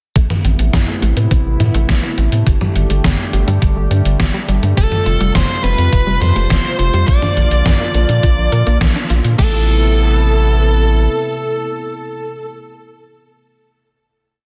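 A round, deep analog bass sits up front, its sequenced sixteenth-note line thickened by tube saturation to drive this cinematic synthwave piece. Beneath it, an overdriven, thumpy machine kick and a gated 80s drum machine with a gated-reverb snare, closed hats, low toms and crash lay down a straight backbeat, both carrying the boom of a large room. A shimmering, pulse-width pad holds sustained chords with vintage 12-bit grit and sidechain pumping, while a lush, detuned unison pluck spins a six-step arpeggio that drifts against the bar, trailed by digital delay. At 4.8 seconds a dark, smooth overdriven lead guitar enters with a picked, motif-based melody, doubled in unison by a bright string-machine violin line carrying ensemble chorus and delay. The drums stop at 9.5 seconds, and the pad, guitar and strings ring on through a final chord until 12.5 seconds, all wrapped in light reverb and a dense, heavily limited modern master.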